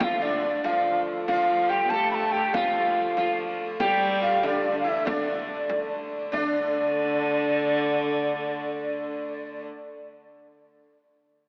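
A straight 6/8 medieval dance with a mysterious, ancient air, this excerpt sets a hollow, chiffy alto recorder melody up front over a buzzing, shimmering sitar line, a reedy viola da gamba with gut-string bite and a nasal, earthy hurdy-gurdy drone, while a close, dry frame drum keeps time until 6.5 seconds, all bathed in a long church reverb and a thin AM-radio sound.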